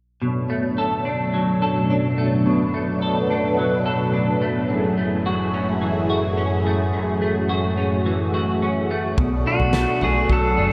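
A twangy pedal steel guitar, played with fingerpicks and slide, arrives at 9.5 seconds with a brief, compressed melody of volume swells trailed by delay. This melancholic, ethereal dream pop fragment sits at 107 BPM in B dorian, moving from Bm7 to F#m7 and back. From 0.2 seconds a mellow, vintage string machine cello patch holds full sawtooth chords with a sub octave, a soft attack and a long release, colored by phaser and ensemble chorus. Beside it, a clean hollow-body electric guitar picks arpeggios through chorus and delay. At 9.2 seconds a dark, round, foam-muted electric bass and a loose acoustic drum kit join, the kit bringing a punchy kick, fat snare and toms in a pumping studio room. The mix is soaked in a huge ambient reverb, with a faint mains hum underneath.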